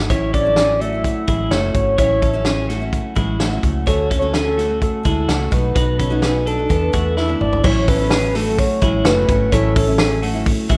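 Jangly indie pop with a youthful, breezy mood, built on bright, twangy twelve-string electric guitar arpeggios and a picked steel-string acoustic guitar sitting in the background, over a dark, round, foam-muted fingered bass. A soft, octave-layered synth lead carries the melody with a sustained, vibrato-tinged tone thickened by chorus, while a loose, gritty indie drum kit sits up front with a punchy kick and a rolled-off top, throwing in a fill at 7.2 seconds. The rough home demo mix has a small-room ambience, and the passage is cut from a longer piece.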